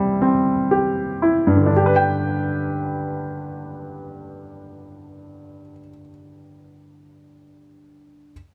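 A clear, smooth grand piano with a vintage tone and short sustain carries the melody up front from 0.0 to 8.3 seconds in this hopeful, tender folk fragment cut from a longer piece, slowing down over a C chord before moving to G at 1.7 seconds, all captured with close, detailed microphones and light reverb.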